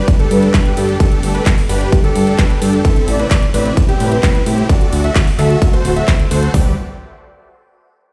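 Euphoric and anthemic, this festival progressive house excerpt at 130 BPM in G major opens on a drop where a punchy, layered big-room drum kit with metallic hats sits up front, a second kit adds handclaps and ride cymbal, a fat detuned analog bass and a huge, thick supersaw riff pump under sidechain, and a dark, mellow concert grand with audible action noise plays arpeggios while a breathy, flute-like synth lead carries the melody in the background with chorus and dub echo, all moving through Gsus2, Am and D before settling on G at 6.5 seconds in a stone-room reverb.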